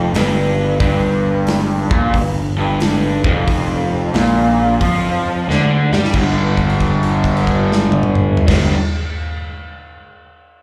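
Blues rock and southern rock power-trio fragment in G minor at a swung 90 BPM, smoky and brooding, with a raw, lo-fi, double-tracked garage guitar riff up front, overdriven and colored by phaser and slapback echo, over a growly fuzz-picked electric bass and a big acoustic rock kit with a punchy kick, medium-tuned snare, toms and bright crash and hi-hat, all heard as a live club gig through the venue's PA, until a drum fill at 5.5 seconds leads into a held note over G5 from 6.1 seconds.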